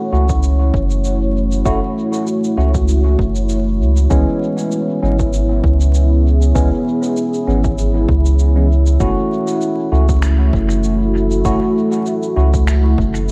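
Ambient dub at 98 BPM in F# minor, this spacious, meditative excerpt settles into a loose 4/4 with a gentle swing on the sixteenths, cut from a longer piece. A deep, moody ambient pad sits up front with sustained, warbling detuned chords softened by chorus and its own reverb, moving from F#m7 to C#m7 at 4.1 seconds and back to F#m7 at 9.0 seconds. Beneath it, a round, soft sub bass holds the low end prominently, while a bright, clean tine electric piano places stabs through analog chorus and dub echo until 12.5 seconds. An overdriven, punchy electronic kick stays in the background, joined by muffled, sampler-style shaker and finger snaps that trail off into dub echo. The whole mix is dreamy and soaked in plate reverb, with a layer of vinyl crackle running through it.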